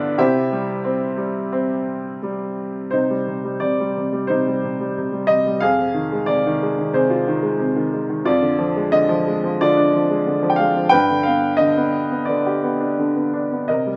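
A clear, woody upright piano opens this lyrical classical fragment, playing alone and up front with long sustain and a light reverb around it. The mood is bittersweet and cool, the time flowing freely in rubato as the harmony shifts from a brief opening on C to C minor at 2.9 seconds, then moves through F minor seventh and a diminished chord before settling on G at 10.9 seconds. Ranging from the low to the upper-middle register, the single piano carries the whole passage, which is cut from a longer piece.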